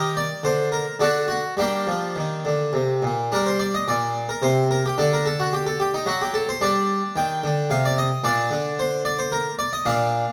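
Introspective and solemn, this brief cut from a longer baroque-style suite movement in G minor sets a solo French-style harpsichord, airy, brilliant and full with its three sets of strings, up front in 3/4 at 110 BPM with a rubato feel, ranging from Bb2 to G5 over chords moving from D to Gm and later to Bbadd9, captured by close, detailed microphones within a moderate recital hall reverb of 1.7 seconds.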